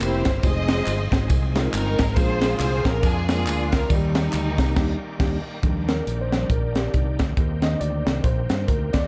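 Uptempo gospel in Eb major at 138 BPM with a swung, hopeful lift: lush bowed strings carry the melody with vibrato, portamento and tape echo over mellow tine electric piano, a very quiet bright organ with slow rotary shimmer, a round, punchy fingered bass, a crisp, up-front fusion kit with a high-tuned snare, and small-room handclaps with tambourine until 4.7 seconds, then after a band accent the electric piano solos from 5.6 seconds over a dark, very quiet French horn section, all in a small-room ambience cut from a longer piece.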